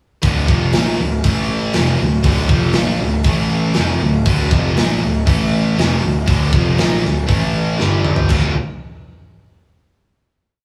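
At 0.2 s, a tight, up-front metal drum kit with a rolled-off top, a fuzzy, overdriven electric bass driving eighth notes, and three picked, distorted guitars launch this aggressive, heavy metal piece in D minor at 119 BPM together: a bright high-gain riff, a sludgy one sitting in the background, and a double-tracked tight one. The guitars chug a power-chord riff alternating between Dm and A5 while the bass doubles it, all inside a rough rehearsal-room sound with small room ambience and light reverb. A drum fill at 7.8 s pushes through a G5 into a final D5 chord that rings out until 10.4 s.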